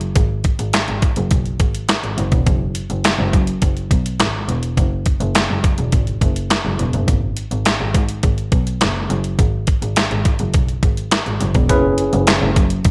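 A straight, danceable 4/4 groove opens this slick early-eighties boogie funk excerpt. It is driven from the first second by a detuned 8-bit drum machine with a thumpy kick, a medium-tuned snare, hi-hat and handclaps, all sampler-style and bathed in gated reverb, as if re-recorded in a large room. Up front beside it, a single bowed double bass carries the low end with a clear, biting, earthy tone and light vibrato. At 11.7 seconds a worn tine electric piano breaks in briefly, slightly out of tune and lightly overdriven through its built-in speakers, before falling away at 12.5 seconds. A digital ambience surrounds the whole mix.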